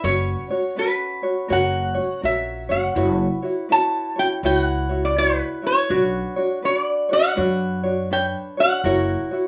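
Hawaiian music with a sunny, relaxed swing at 82 BPM, cut from a longer piece, where an up-front lap resonator guitar carries the melody with a metallic, nasal slide tone played with fingerpicks over a light, thumb-plucked tenor ukulele and a woody, growly pizzicato upright bass on steel strings that drops out at 9.1 s, all in a small room ambience as the harmony moves from F#sus4 through Bmadd9 to F#7.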